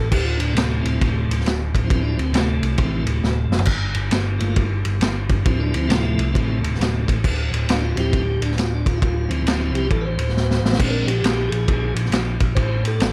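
A piping, scooped tonewheel organ with a slow rotary speaker solos in sustained chords over a growly, overdriven picked electric bass, as an up-front, gritty, saturated vintage drum kit with dark cymbals and a punchy kick drives this brooding, heavy swung blues rock and southern rock fragment from a longer piece, with drum fills at 3.2 and 10.3 seconds in a dry mix.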